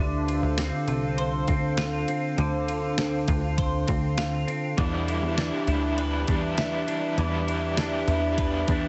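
Hazy and ethereal, this dream pop fragment from a longer piece drifts in a straight 4/4 over a move from Dm7 to Em7 at 4.8 seconds. A warbling, nostalgic pad holds sustained chords with a slow attack and long release, its dark lo-fi tone softened by chorus and built-in reverb, while a clean, twangy electric guitar plays fingered arpeggios through ensemble chorus and tape echo. Underneath, a punchy, funky analog bass gives plucky, fast-attack notes that decay, and a detuned 8-bit drum machine sits up front with a thumpy kick, fat overdriven snare, ride cymbal and tambourine, sounding as if re-recorded in a small room. At 4.8 seconds a raw garage guitar joins as accompaniment, picked and double-tracked with overdrive, tremolo and subtle chorus. The whole mix carries light reverb and a heavily compressed, radio-like sound with the top end rolled off, giving it a dusty, nostalgic haze.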